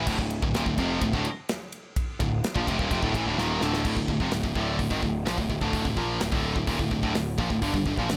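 Aggressive and dark, this heavy metal excerpt drives along at 127 BPM in D minor, with two distorted electric guitars, one heavy and high-gain and up front, the other tight, playing picked riffs over a growly, fuzz-laden picked bass. A polished acoustic drum kit with bright cymbals, a medium-tuned snare and a tight kick sits forward in an airy studio room, entering at 0.1 seconds and landing a fill from 3.4 to 3.9 seconds before the riff shifts into a new section. The harmony holds on D minor until a G power chord arrives at 7.6 seconds.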